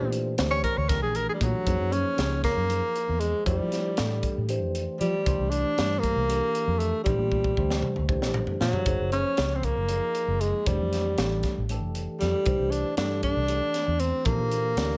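In a straight 7/8 at 234 BPM, this funky, bright electric jazz fusion excerpt in Bb lydian puts an intimate, breathy tenor saxophone up front, its subtone melody scooped and whispered through slapback echo and plate reverb and solo for the first 1.7 seconds, over a mellow, phased tine electric piano moving through chords like Bbmaj9, Gbmaj9#11 and C13, a dark, foam-muted, round fingered bass, and a crisp small-room drum kit with a high-tuned snare and punchy kick that plays a fill from 7.3 to 8.9 seconds.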